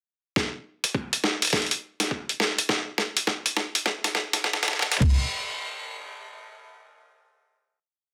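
Gritty and swaggering, this short glitch hop piece at 103 BPM with a 64% 16th-note swing builds from 0.4 seconds on a drum fill, pairing an up-front boom bap sampler-style kit of pitched-down snare, closed hi-hat and crash, played as a swung, edited beat, with a thumpy, broken electronic kick in a small room, until the drums drop out at 5.2 seconds and a final hit rings on in moderate studio reverb under a dense, heavily limited master.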